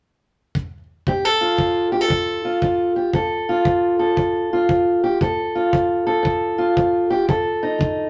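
Swinging in 4/4, this soulful, mournful excerpt of acoustic country blues opens with a tight, small-room kick drum with brushes at 0.6 s, sitting low in the mix, before a dark, up-front fingerpicked parlour steel-string guitar enters at 1.1 s on a Gsus2 and moves to D5 at 7.3 s, the whole set in a moderate studio reverb.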